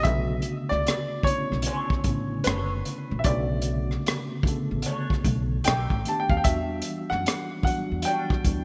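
A crunchy breakbeat kit with a punchy kick, rolled-off top, hi-hat and rim click sits up front in this late-night, soulful neo-soul excerpt, swung on the sixteenths, while a woody, growly pizzicato upright bass and a mellow tine electric piano heard through its built-in speakers hold down the Bm9 harmony. A clear baby grand carries the melody with short sustain, and from 1.7 seconds a slightly broken-up, lo-fi electric guitar through a small old amp adds a picked second line with wah and lush chorus, before the chords later move to B7alt and Em9. A moderate hall reverb and bright 1980s-style digital production give the mix its sheen.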